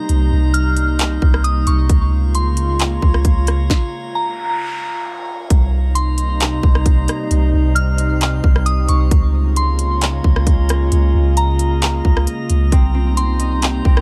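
A crisp, hard-clipped trap drum kit and a deep, round 808-style bass sit up front in this melancholic, ethereal half-time cloud-rap excerpt, beneath a warbling, nostalgic tape-like pad with pumping chords, a soft FM synth bell melody trailing tape echo, and a glassy texture of drifting overtones, with a break at 3.7 s filled by an electronic noise sweep and a ringing fingerpicked concert harp entering with echoed arpeggios at 12.7 s in a dry, echo-heavy mix.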